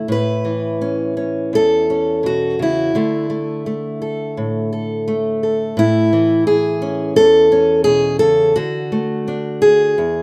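Folk piece for solo fingerpicked steel-string acoustic guitar in A major at 85 BPM in a straight 4/4, with a nostalgic, warm mood. The guitar sits up front with a concert-instrument character, ranging from E2 to B4 as it moves between A and Dsus2, reaching Dsus2 first at 3.0 seconds. Light reverb and small-room ambience give this short cut from a longer piece the feel of a rough home demo.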